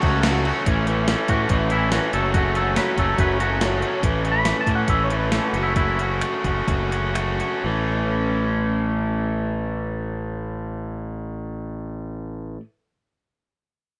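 A clean, twangy electric guitar carries the melody in this carefree, upbeat indie rock fragment, taking a fingered solo from 0.7 seconds. Beneath it, a bright overdriven guitar picks a riff up front. A second overdriven guitar sits in the background, compressed and colored by ensemble chorus and digital delay. A fuzzy, fingered electric bass with overdrive sits prominently under the guitars. A gated 80s drum machine with a thumpy kick, gated reverb snare, hi-hat, finger snaps and crash cymbal has a sampler-style, tape-warm character, and it drops out at 7.5 seconds. The harmony moves between F#m and A, the pace slows from 4.0 seconds, and the rough home-demo mix sits in a moderate studio reverb.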